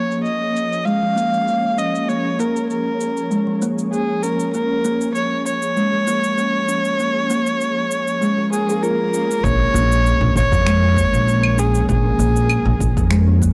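A lightly swung 4/4 groove of filtered electronic cabasa, finger snaps and claves carries this meditative, earthy organic downtempo excerpt, where a rich, bowed kamancheh sings an up-front melody with vibrato and portamento over mellow, woody kalimba arpeggios, both touched by analog delay, while an ethereal, warbling pad pumps in the background under a filter sweep, until a very quiet swell at 8.5 seconds gives way to a punchy electronic kick and a pizzicato upright bass entering at 9.4 seconds, the whole captured in a dry, gritty recording with light reverb.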